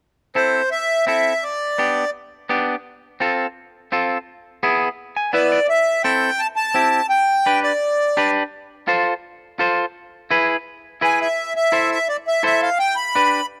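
Latin, danceable and fiery at 169 BPM in A minor, cut from a longer piece, where a reedy, slow-beating accordion sits up front with melody phrases between C5 and B5 over a bright, twangy, picked clean electric guitar accompaniment that carries the Am, G, F, E progression throughout and adds a fill at 5.0 seconds before the second section, heard through close, detailed microphones with light reverb.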